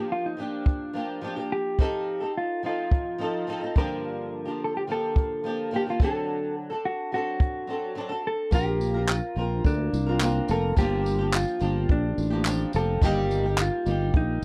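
A jazz brush drum kit with handclaps and a boomy kick sits up front in this tender, wistful acoustic pop excerpt in G minor at 107 BPM, joining at 0.7 seconds beneath a dark, clean, compressed electric guitar melody and a double-tracked, fingerpicked flamenco guitar accompaniment. At 8.5 seconds a bright, growly fretless electric bass with ensemble chorus enters alongside a jingly vintage tambourine in the background, as the chords move from Gm7 and D7 to Bbsus2 and Eb. The sound is dry and close, like a 1970s studio recording.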